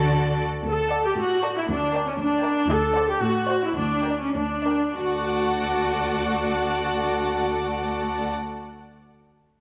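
A wet scoring-stage reverb surrounds this lively, graceful cut from a quick classical-period movement for string orchestra in D major and 2/4, moving at 92-121 BPM with a rubato feel and slowing between 2.2 and 5.0 seconds. The smooth, evenly bowed violas sit up front with the accompaniment, while a dark, woody first-violin section carries the melody from the background. Focused second violins play a rich second line, and close cellos hold the bass alongside a soft-attacked, expressive double bass section that slides with portamento only in the first 0.5 seconds. The harmony moves from D through Gm/D and D7 before settling back on D.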